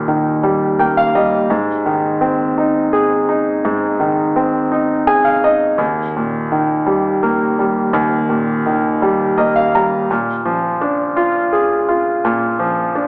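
Pop in a romantic, swaying 6/8 at 56 BPM in Eb major, tuned to A4 = 436 Hz, this excerpt features a solo concert grand piano spanning Eb2 to Bb5, with a brilliant, polished tone, deep bass and short sustain, placed up front. Brief piano fills arrive at 0.4, 4.7 and 9.0 seconds as the harmony moves from Eb to Ab, back to Eb and onto Bb7. A moderate concert hall reverb surrounds the piano, while the overall sound has the character of a small speaker.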